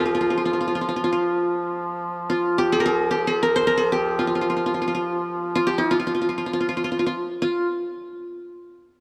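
A mellow, bright-edged qanun leads this stately, festive fragment of a longer Arabic maqam piece, its triple-strung courses plucked with fingerpicks and placed up front. The qanun carries the melody from the start until 7.7 seconds, tracing a line that reaches into the quarter-tone inflections characteristic of the maqam. Beneath it, a warm duduk holds a steady drone in a folk style, singing with vibrato and scooped notes before it stops at 7.5 seconds. A wet plate reverb with a 2.9-second decay surrounds the ensemble, and the recording sounds as if heard from further back in the room, lending the acoustic playing a spacious, ceremonial glow.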